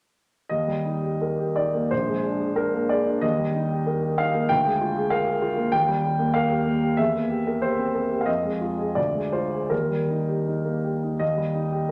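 Set in a two-beat metre and played with a freely breathing rubato, this short passage is a romantic character piece for solo piano, cut from a longer work. The mood is hopeful and lyrical, carried by a baby grand piano that sits up front with an open, warm tone and long sustain. It plays alone from 0.5 seconds to 11.9 seconds, reaching from Bb1 in the bass to G5 at the top. The harmony moves between Eb and Bb7, then passes through C7/E, Fm7 and Dm7b5 before settling back on Eb near 9.7 seconds. A wet recital hall reverb surrounds the instrument, lending the phrases a resonant, spacious afterglow.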